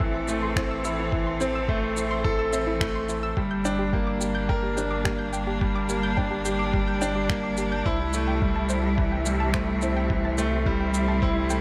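An up-front grand piano with audible action noise plays a delayed riff through this cinematic, moving piano-and-strings electronica excerpt at 107 BPM in G dorian, over sustained chords from a distant, vibrato-rich string quartet, soft round arpeggios from a dark background pluck with chorus, delay and sidechain pumping, and a deep, round sine sub bass that also pumps; a muffled, thumpy, pitched-down kick and layered shaker and finger snaps, both with a tape-warm small-room character, carry the build-up into the drop at 3.4 s, all set in a moderate echo chamber reverb.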